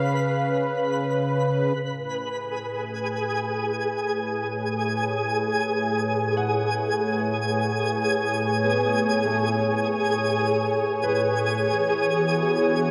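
A twinkling granular texture with octave-up shimmer sits up front beside a detuned, warbling sawtooth pad that fades in from 1.8 seconds over chords moving from C#7 to Amaj9 and then E13, while a soft, felt-muted upright piano joins at 6.4 seconds with delayed arpeggios in the background, all set in a concert-hall reverb that gives this serene, reflective ambient passage, cut from a longer piece, a spacious glow.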